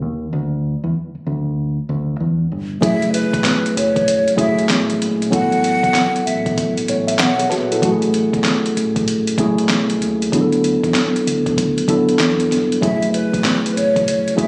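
A swung 16th-note boom-bap groove drives this reflective, gritty hip-hop cut, opening with a dark, round dub bass alone before a dusty sampler-style kit arrives at 2.8 seconds with a thumpy kick, fat snare, handclaps and hi-hat, joined by an up-front tine electric piano through a low-pass filter and a breathy, hollow concert flute with delay that drops out and returns at 12.8 seconds, the sound captured on a phone in a room with club reverb and compression.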